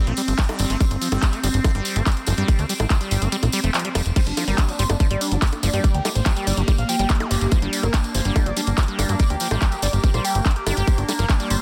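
Alien and hypnotic, this psychedelic trance excerpt in G minor drives at 143 BPM, with a tight, up-front electronic kick that drops out from 3.3 to 4.2 seconds, a punchy, funky analog bass, a squelchy, resonant acid bass riff with dub echo, a bright-hatted drum kit of bongos, crash, handclaps and hi-hat, a jingly, close tambourine, a morphing wavetable pad holding sustained chords through phaser and sidechain pumping, a gritty, screaming, guitar-like overdriven lead melody entering at 4.2 seconds, and a brief background zap at 7.2 seconds, all in a dense, heavily limited modern master with light digital ambience.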